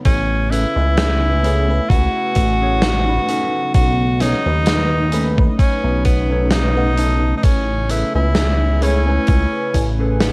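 Vaporwave with a dreamy, faded mood, cut from a longer piece: an edgy, forceful tenor saxophone with tape echo carries the jazz-style melody up front, scooping into its notes over a glossy, chorused synth bass and a thumpy electronic kick. Behind them sit hi-hat and a medium-tuned snare from a big rock kit with gated reverb, a lush FM electric piano with phaser and chorus, a dark, clean electric guitar riff that adds a fill from 5.6 to 7.4 seconds, and a very quiet, warbling, nostalgic, lo-fi tape-like pad holding sustained chords. The harmony moves between Amaj9 and B9, and the recording has a dry, cassette-tape sound.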